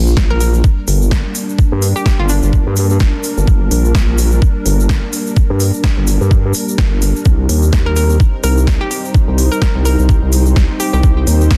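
A dense, heavily limited and dry mix opens this gritty, aggressive bass house excerpt in G minor at 127 BPM with a 16th-note swing. An overdriven, knocking electronic kick and a big-room kit of punchy snare and crisp hats drive the groove alongside a nasal, saturated vowel-sweep wobble bass up front. A hollow, bouncy square pluck carries the chorused, delayed melody from 0.3 to 2.8 seconds and again from 7.9 seconds. Beneath it sit a moody sawtooth analog pad, an ethereal pad with its own reverb, and a grainy tube shaker in the background as the harmony moves from Gm to Cm.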